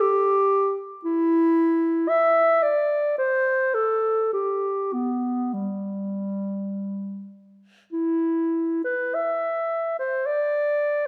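A classical, baroque-style fantasia for unaccompanied clarinet in G major, this short excerpt from a longer piece moves in a flowing, serene 3/4 with rubato at roughly 47-58 BPM. The mellow clarinet plays alone and up front from 0.0 to 11.1 seconds, ranging from G3 to E5, with its opening idea returning at 7.9 seconds. A moderate recital-hall reverb, with a decay of 1.5 seconds, gives the line a gentle, airy space.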